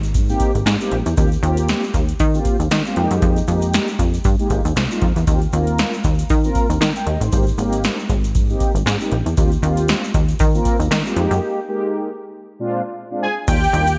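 Danceable and smooth, this early-eighties boogie funk excerpt moves at 117 BPM in 4/4 with a lightly swung sixteenth-note feel in Eb major. A plucky, punchy analog bass with a filter pluck and an electro analog drum machine sit up front throughout, the kit's deep kick, punchy snare and metallic hats soaked in gated reverb. A grainy egg shaker stays in the background, while a mellow, round synth brass with chorus carries the chords from 0.3 seconds, cycling through Abmaj9, Eb6 and Fm11 before a Bb7 turnaround resolves to Ebmaj7. A break arrives at 11.4 seconds, and at 13.2 seconds a fat, detuned analog lead with ensemble chorus and a sub octave enters high in its register just as the clip ends. Light digital ambience and bright 1980s-style production give the whole a polished sheen.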